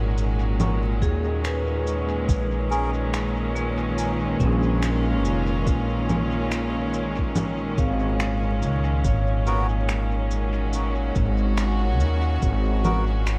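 A swung sixteenth-note groove of electronic shaker, congas and finger snaps trailing dub echo, joined by a soft electronic kick at 1.0 seconds, drives this spacious, hazy ambient dub passage cut from a longer piece, where a woody, thumpy pizzicato upright bass with tube saturation and a clear, earthy bowed chamber string section sit up front on sustained minor-ninth and seventh chords, while a bright, ringing vibraphone arpeggiates in the background and a reedy, breathy melodica adds echoing stabs briefly at 2.7 seconds and again from 9.5 seconds, all wrapped in light reverb, small-room ambience and vinyl crackle.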